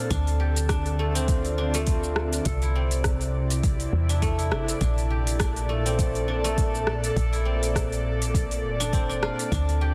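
A soft, tape-warm electronic kick and a deep house kit of metallic hi-hats, rim clicks and shaker, overdriven and set in a small room, carry a 102 BPM 4/4 pulse with a light 16th-note swing in this hypnotic, mystical organic downtempo excerpt. A round, woody FM bass sits low beneath silvery, ringing guzheng arpeggios touched with tape echo, while an airy, breathy pad with chorus and sidechain pumping holds sustained chords through Dm7, Cadd9 and Bbmaj7. The dense, heavily limited master carries a light reverb over the roughly 10-second cut from a longer piece.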